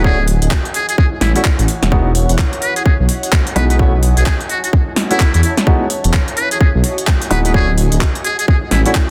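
A muted trumpet with a buzzy, brilliant tone and light vibrato carries a jazz-style melody over a soulful, sunny two-step UK garage groove at 128 BPM in E major, where a deep, rumbling detuned saw bass pumps against a tight, up-front kick, crisp hats and a cracking, softly clipped snare, while polished baby grand piano stabs with delay and a mellow, cloudy granular pad fill out this dense, heavily limited short cut.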